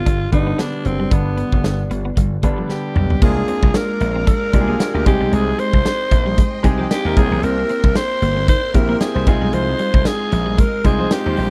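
This dry, close recording has a 1970s studio feel, with little reverb, framing a moody, nostalgic slice of 1980s-style pop at 114 BPM in 4/4 with a light swing on the sixteenths. A breathy, raspy alto saxophone carries the melody, its scooped notes and vibrato trailed by a slapback echo. Beneath it, a clear, polished baby grand piano provides accompaniment, while a clean, picked electric guitar riff sits in the background, colored by analog chorus and its own slapback echo. A direct electric slap bass and a big rock drum kit, with a punchy kick, bright cymbals, tambourine and toms, drive the groove; the drums play a fill from 2.7 to 3.2 seconds. At 3.2 seconds the chords shift to Bb7 and a vintage sawtooth string machine on violas enters with soft-attack sustained chords, and from 4.7 seconds a mellow, distant horn section adds stabs with a light vibrato.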